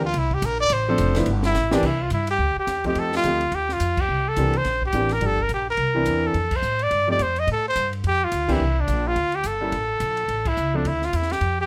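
Relaxed and playful, this small-group swing and bop excerpt in C mixolydian moves at a brisk 213 BPM with a 60% swing on the eighths, as a clear trumpet opens over the upright bass before a second, warm, close-miked trumpet with light vibrato takes the melody at 1.5 seconds over woody pizzicato upright bass, an intimate concert grand piano whose action noise can be heard, and a dry cocktail drum kit with dark cymbals, a high-tuned snare and a punchy kick, with a drum fill at 1.6 seconds, band accents punctuating the tune and light reverb around it all.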